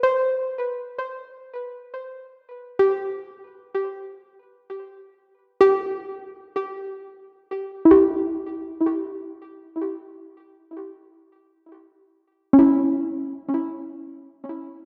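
Drifting in free time, this peaceful, serene ambient fragment features a single soft, round synth pluck playing solo and placed up front. Its dark, wave-folded tone strikes quickly and then decays, colored by chorus and tape echo as it moves between C#4 and C5 over a Gsus4 chord that shifts to C#dim at 7.6 seconds. A wet scoring-stage reverb with a 2.0-second tail surrounds the pluck, and the whole piece is tuned to A4 = 436 Hz.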